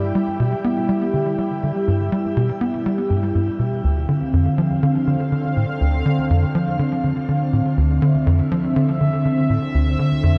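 A punchy, driving sequencer bass riff of sawtooth and square wave and a sweeping, resonant pad of sustained chords sound together from the start of this excerpt of cosmic, expansive ambient space music. It moves at 122 BPM in a straight 4/4 in D dorian, tuned to A4 = 441 Hz, and shifts from G to Dm7 at 3.8 seconds. The up-front bass has a fast-attack, decaying filter pluck through lush chorus and tape echo, while the bright, full-bodied pad of sawtooth and sine with a sub octave evolves with a slow attack and its own chorus, all under an 8.0-second shimmer reverb in a dark, warm production across the 10.4 seconds.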